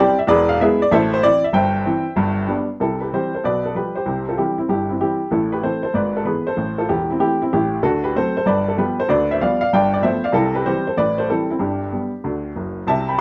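Playful and exuberant, this short cut from a longer jazz piece is solo stride piano at a brisk 191 BPM in 4/4, swung in C major. A clear upright piano carries everything from 0.0 to 13.2 seconds, ranging from a low E1 up to B5, its tone woody and slightly detuned with a short sustain. The opening phrase moves through E, Am, C/G and G before a longer second passage begins at 2.8 seconds, touching on a minor turn with Am and E/G# and then moving through D7, G7 and a G9 to C, closing on G. The piano sits up front with a natural character, set in a moderate studio reverb.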